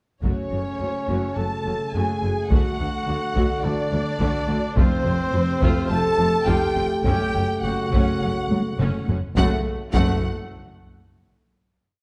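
A heavy-sticked taiko ensemble pounds a big drum ostinato and a fill from 8.5 to 9.4 seconds beneath this dramatic, epic orchestral film cue in minor, where two lush violin sections carry the expressive, vibrato-rich melody doubled at the octave, a distant, mellow solo trumpet doubles the tune in unison and sixths, violas drive a rhythmic ostinato, rich cellos and clear double basses anchor the bass, and dark French horns and trombones hold sustained chords, all bathed in the reverb of a scoring stage before settling on a final chord at 9.4 seconds.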